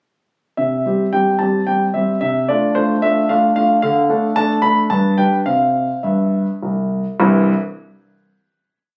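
Classical-period piano sonatina, a brief, complete piece in 3/4 with an elegant, cheerful mood and a gently rubato feel. A solo grand piano, polished and up front in a dry room, plays a single-line melody over repeated chords, moving from C through Dm7/C, Dm and G before settling home on C. It begins at 0.6 seconds and ends on a final chord that sounds from 7.2 seconds.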